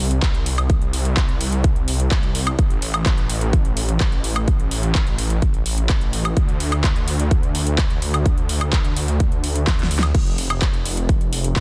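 Festival progressive house with a triumphant, euphoric lift, this excerpt rides a thick, detuned sawtooth bass that sits up front with chorus and sidechain pumping, its sustained unison tone saturated and lush. A punchy, overdriven electronic kick sits up front alongside a layered big-room kit of huge snare, metallic hats, handclaps, crash cymbal and woodblock, with a drum fill at 9.7 seconds. The dense, heavily limited master is bathed in digital ambience.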